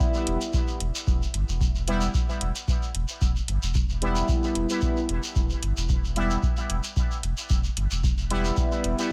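An analog electronic kick drum anchors the 4/4 metre at 112 BPM, with a lightly swung 16th-note feel at 54%, while metallic hi-hats and a grainy acoustic shekere from a small room fill in the upper percussion. This is hazy, deep dub techno in E minor, cut from a longer piece and resting on a single Em chord for its 9.1 seconds. Beneath the groove, a round, mellow sine sub bass sits between E1 and G1 and pumps with the sidechain. Up front, a juicy, resonant polysynth blending square and sawtooth waves plays stabs between G3 and E4, its filter sweeping as chorus, phaser, sidechain pumping and dub echo color the sound. The kick and hats carry a tape-warm analog character, and light reverb surrounds the mix.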